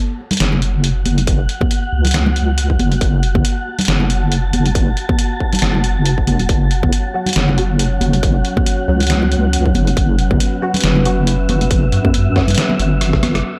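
An airy, breathy wind-like noise texture opens this cavernous, heavy deep dubstep excerpt in F# minor at 138 BPM with a swung half-time feel, joined almost at once by muffled, overdriven sampler-style trip hop drums, bright congas trailing dub echo in the background and a soft, up-front square-wave wobble bass with chorus; a distorted, layered electronic kick comes in at 1.3 seconds, a moody, detuned analog pad and a muted, phased dub chord stab arrive around 7.0 seconds, and a drum fill leads to a band accent at 13.3 seconds.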